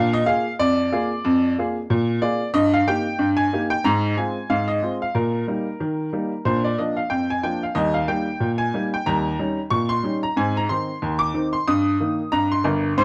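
Ragtime piano in Eb major at 92 BPM, this jaunty, lively 13-second excerpt from a longer piece features a solo upright piano with a light swing on the sixteenths, played across a range from G1 to Eb6. The piano sounds clear, woody and slightly detuned, with long sustain, and sits up front in a dry, close 1970s-style studio recording with a small room ambience. Its harmony moves from Bb7 through Eb/G, Fm/Ab and Eb7 to Ab before settling on Eb/G.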